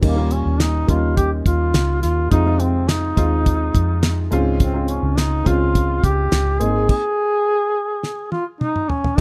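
A duduk carries the melody with soft-attacked, scooped notes and a folk-style vibrato, giving this hopeful, uplifting piano-driven pop excerpt its voice over chords moving from Eb7 through Fm7 and Dbmaj7 to Abadd9. Beneath it, an intimate, woody upright piano with audible action noise and a slightly detuned character supplies the accompaniment, while a dark, round, foam-muted electric bass and a dry, damped 70s drum kit with a fat snare, tight kick, handclaps and toms sit up front. The rough home-demo mix has little reverb, and a stop arrives at 6.9 seconds, with a drum fill from 8.0 seconds to the end.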